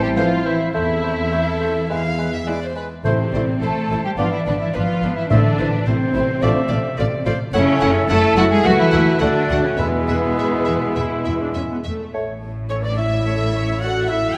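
Classical-period orchestral movement, urgent and restless, at a quick 106 BPM in 4/4 with a rubato feel, turning from A minor to A major at 7.5 s: an intimate, sul tasto chamber violin section carries the melody over a lush studio violin section, pure bright flutes, a clear clarinet and a warm oboe on second lines, while a tight, mellow French horn section holds sustained chords, a rich viola section and a light-vibrato bassoon fill the accompaniment, a focused cello section and dark double basses anchor the bass, round soft-mallet timpani enter at 3.0 s, a distant, roomy trumpet section adds stabs from 12.7 s, and a wet concert hall reverb surrounds the orchestra.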